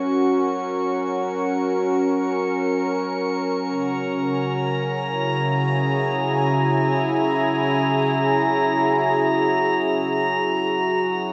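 Ambient music, serene and luminous, floating in free time across a short 11.3-second passage cut from a longer piece. Up front sits a smooth, detuned sawtooth analog pad holding sustained chords with a slow attack and a chorus sheen, joined by a calm, drifting glass-harmonics texture, bright sine tones with drifting overtones, chorus and their own built-in reverb, sustained with a long release high above. Beneath them, a pedal harmonium holds a reedy, breathing drone with a boxy small-room character, lower in the mix. The harmony moves from F# to C#m at 3.7 s and returns to F# at 10.1 s. A wet cathedral reverb with a long 6.1-second tail surrounds the music, and the whole recording carries the worn, warbling pitch drift of old cassette tape, its top end dulled well short of full brightness.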